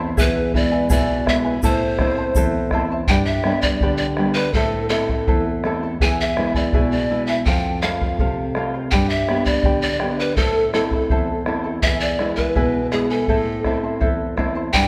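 A straight 2/4 pulse at 82 BPM drives this melancholic yet festive Andean folk piece in A minor, cut from a longer performance and moving through E, Am, G and F. A breathy bamboo pan flute carries the melody up front with vibrato, chiff and an unsteady tone, over a full-bodied, fingerpicked nylon-string guitar with audible finger squeak and a shimmering, double-strung charango. A deep, distant bombo anchors the beat, while a grainy tube shaker sits close and dry only until 2.5 seconds, all set in a wet recital hall reverb with a dark, warm production.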